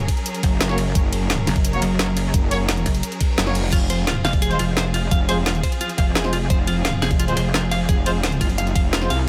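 Heard in a digital space, this short cut from a longer track is dark, technical drum and bass at 173 BPM in F phrygian, aggressive and tense from the first bar. A metallic, FM-sourced wobble bass sits up front, distorted and overdriven with a chorus sheen, alongside a heavy, pulsing pluck wobble bass that runs from 0.4 to 7.9 seconds. An overdriven electronic kick knocks beneath a layered kit of woody snare, bright hi-hats, ride and crash cymbals. Behind them, a lush bowed string section holds sustained chords with vibrato, its smooth top pumping against the sidechain, while a classical-style brass ensemble punctuates with present stabs trailed by delay. A reverse cymbal rises in the background just before 3.7 seconds, where the harmony moves from Gb to F minor and a clean, picked electric guitar enters with arpeggios soaked in spring reverb and delay.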